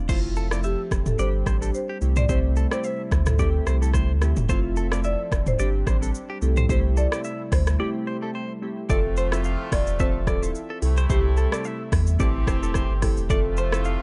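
Opening on a deep sine sub bass, breezy and joyful afrobeats glides over a punchy, layered deep house kit with metallic hats, glassy chorused digital keys, a smooth sawtooth pad in the background, a twangy clean electric guitar riff through phaser and a woody marimba melody with tape echo, before a distant, roomy horn section with tape echo joins after a short break at 8.9 seconds.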